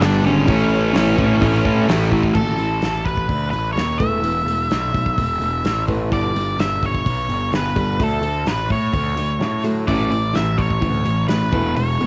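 This excerpt opens on a full-band passage of quiet-loud alternative rock in A mixolydian at 127 BPM, with a dark octave-fuzz lead guitar carrying the melody over a crunchy, bright overdriven guitar riff up front, a thick fuzz guitar riff sitting in the background, and a barely audible, distant bowed string section holding rich sustained chords. A growly fuzz picked electric bass and a loose indie drum kit with a tight kick, medium-tuned snare, hi-hat and crash drive the straight 4/4 feel, and a drum fill at 2.1 seconds closes this opening passage. At 2.3 seconds the strings, the thick fuzz guitar and the crunchy overdriven guitar drop away and a fingerpicked steel-string acoustic guitar enters with arpeggios, its fresh strings and finger squeak audible beneath the lead melody, bass and drums as the chords move through A6, Esus4, G and D. The crunchy overdriven guitar returns at 9.9 seconds for the final stretch, restoring some of the grit. 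The whole takes on the character of a home cassette recording in a small room, giving its restless, cathartic mood a raw, intimate edge.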